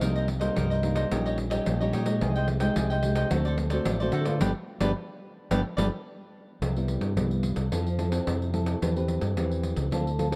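Festive, joyful samba and choro at 109 BPM in 4/4, where a crisp, picked cavaquinho, a woody, thumb-plucked nylon-string guitar with old strings, a round, up-front fingered electric bass and a jingly pandeiro move through a run of chords toward a band accent on G at 4.4 s. The cavaquinho drops out at 5.9 s, and the music settles into C major at 6.6 s, with guitar, bass and pandeiro carrying a Cmaj7 to Fmaj7 passage. Light reverb and a dark, warm production frame this short cut from a longer piece.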